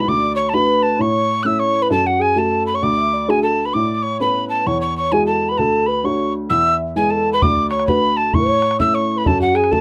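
Moderate booth ambience frames this cheerful, rollicking Celtic polka excerpt, which moves at 130 BPM in 2/4 with a swung eighth-note feel. Up front, a metal whistle carries the melody with a breathy, tongued chiff, vibrato and a slightly unsteady tone. Beneath it, a round, horn-like synth lead with chorus and a soft, sustained attack plays a second line, while a dark upright piano gives woody accompaniment with short sustain and audible action noise. The harmony cycles through D, A and F#m, touching Aadd9 and Eadd9 along the way. At 7.4 s a damped, tight bodhran joins as the section begins again, adding close acoustic percussion through the end at 9.8 s.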